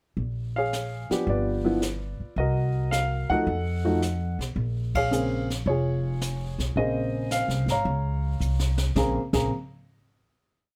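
Close, detailed microphones and very little reverb give this short jazz piano trio piece an intimate, dry sound. It's a swinging, late-night tune in Bb minor at 109 BPM, with a strong swing on the eighth notes. The brushed drum kit sits low in the mix, with sweeps on a high-tuned snare, dark cymbals and a boomy kick. Pizzicato upright bass, woody and thumpy with steel strings, stays up front in a two-feel. The mellow baby grand piano carries a motif-based melody and syncopated comping in drop2 voicings over Bbm7, G7, Cm7b5 and F7b9, resolving to Bbm9. The band hits an accent at 4.8 seconds, a drum fill leads in at 8.4 seconds, and the trio closes on a final chord at 9.0 seconds.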